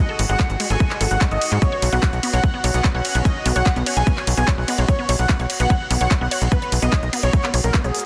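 A punchy, up-front electronic kick drives this psychedelic trance excerpt at 147 BPM in a straight 4/4, anchored by a tight, nasal sequencer bass with a fast-attack filter pluck that sits just as far forward. The kit around them adds smooth hi-hats, handclaps and ride cymbal, layered and re-recorded in a small room. Over the top, a thick, bold unison lead of detuned sawtooth with a sub octave carries the melody through phaser and tape echo, while a lush, detuned unison pluck plays a riff through digital delay, both pumping with sidechain compression. Deep in the background, a resonant drone with moving overtones holds sustained chords with chorus and its own reverb, and a very quiet, metallic FM wobble bass appears only from 2.7 to 4.8 seconds as a distorted second line. The harmony moves from G#7 with the third omitted to B5 at 1.6 seconds, all under a dense, heavily limited modern master with light reverb that keeps the psychedelic, driving mood pressing forward.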